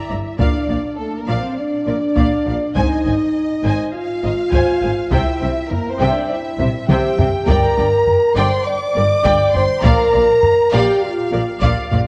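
Epic and dark, this cinematic orchestral film-score passage, cut from a longer piece, moves at 102 BPM in a straight 4/4 and cycles through Bb, Ab, C, Gm and back to Bb. Two violin sections carry the melody and a second line, bowed with lush vibrato, the first with a soft, expressive attack and the second smooth and even, while the viola section fills in close accompaniment with touches of portamento. Up front, a dark French horn section holds sustained chords with light vibrato and a roomy, distant character. Underneath, a rich, focused cello section sitting in the background and a distant, even double bass section share the bass line. A taiko ensemble enters at 0.4 seconds, struck with hard sticks and sounding close and dry, and plays a fill from 6.6 to 7.5 seconds. The whole mix sits in a moderate scoring-stage reverb and carries the worn, warbling pitch drift of old cassette tape.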